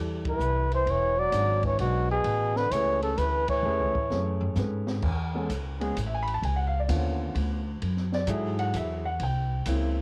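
Piano and woody pizzicato upright bass open this playful small-group swing excerpt in a lilting waltz time, joined almost at once by a dark-cymballed drum kit with a high-tuned snare and boomy kick. From 0.3 seconds a breathy, mellow trumpet carries the melody with vibrato and scooped notes, while a clear, punchy trombone plays a second line beneath it; both horns stop at 4.4 seconds as a drum fill leads into the next section over rich extended chords. The piano, drums and horns carry a cassette-tape colour, and the whole ensemble sits in the snug ambience of a small-room home recording.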